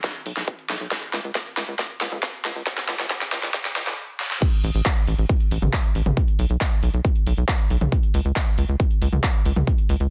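Emotional and driving, this short cut from a longer uplifting trance piece runs at 137 BPM in a straight 4/4. It opens on a build-up, with the big-room dance drum kit of toms, handclaps, snare, hi-hat and crash rolling through a fill from the start, a punchy, layered electronic kick underneath, and a tight sequencer bass arriving at 0.3 seconds. The kit has a huge snare and metallic hats, with sidechain pumping on the hats, toms and cymbals, while the bass, a saturated blend of sawtooth and square wave with a fast-attack filter pluck, pumps as it moves between A1 and C#2. A brief stop at 4.0 seconds gives way to the drop at 4.4 seconds, where kick, kit and bass push forward together up front. The sound is dry, with little reverb, and the master is dense and heavily limited in a modern style.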